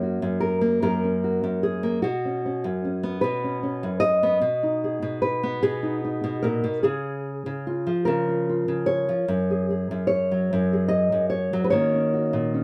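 Close, detailed microphones and a light reverb place the nylon-string guitar up front, its fresh strings sounding warm and intimate. This is a gentle, warm folk excerpt for solo fingerstyle guitar, moving at an unhurried 50 BPM in 6/8 with a straight feel in F# major, tuned slightly above standard pitch. The guitar is thumb-plucked with a classical touch and plays alone across the full 12.6 seconds, ranging from F#2 up to D#5. The harmony opens on F# and drifts through Bsus2, G#madd9/B and C#6 before settling on F#sus2 and closing on D#m7, the suspended and added-tone colors giving the passage an open, tender quality. Cut from a longer piece, it feels like a calm, reflective moment.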